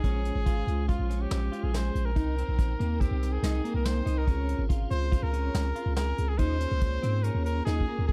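A dark, lightly reverberant production frames this tense, brooding progressive band excerpt in 5/4, where a brilliant, forceful trumpet carries the melody through plate reverb over piping tonewheel organ with chorus vibrato and key click, clean picked electric guitar arpeggios with ensemble chorus, a deep, up-front sub bass with a pitch-drop attack, and a soft brushed drum kit that closes with a fill at 7.7 seconds.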